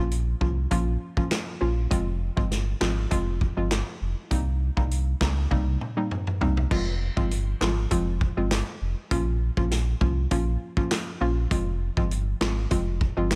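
A deep, full sub bass with an octave layer anchors this hypnotic, sultry dancehall cut, sitting up front beneath a hollow, warbling square-wave pluck that bounces with chorus and sidechain pumping. An acoustic vintage drum kit with a punchy kick, dark cymbals and a rolled-off top drives the groove with kick, snare, hi-hat, handclaps, toms and crash, and a drum fill from 5.5 to 6.7 seconds leads into the second section. A small room ambience gives the whole mix a close, intimate feel.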